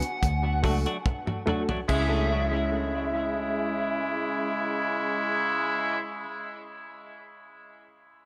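Dub reggae in a meditative, heavy mood, this echo-heavy excerpt pairs a dark, picked lead guitar melody through a small cranked amp with barky, reedy electric piano stabs pulsing with fast tremolo, a round, foam-muted fingered bass up front, a compressed clean electric guitar with subtle chorus entering at 0.6 seconds, dry damped 70s drums that play a fill before dropping out at 2.1 seconds, and a tight, punchy horn section taking a second line from 1.9 seconds as the chords move from D to C#m.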